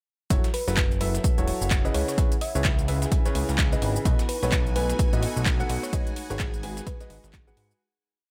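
A punchy four-on-the-floor kick drives this energetic, bittersweet piano house piece at 128 BPM in F# dorian, with swung sixteenths from metallic house hats, shaker and claps and a gritty, very quiet looped breakbeat underneath, while a fat, saturated syncopated bass riff and woody, slightly detuned upright piano playing dotted-rhythm chords pump with sidechain, a warbling lo-fi pad and a round, tine-like synth pluck sit in the background, shimmering string-machine violins enter at 4.1 s with sustained chords, and the music fades out from 5.3 s to its end at 7.8 s.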